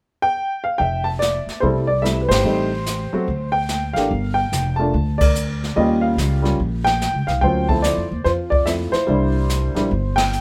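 The piano opens alone at 0.2 seconds, a warm, intimate upright with audible action noise and a slightly detuned, natural character, carrying the melody up front between F3 and A5. At 0.8 seconds the upright bass and a brushed jazz drum kit join, turning this excerpt from a longer piece into a sophisticated, playful jazz piano trio swinging at 145 BPM in 4/4 and F major, tuned to A4 = 438 Hz. The pizzicato bass sounds woody, with steel strings, and sits close in the mix, anchoring the low end from F1 to F2. Brushes play across an airy, polished kit with dark cymbals, a medium-tuned snare, hi-hat, ride and a boomy kick, set in a small room. The harmony moves from Fmaj9 through Am7b5, D5, Gm7, Eb9 and Dm7 to C7, with the whole band hitting accents at 2.2, 5.1 and 10.1 seconds, all under a light reverb.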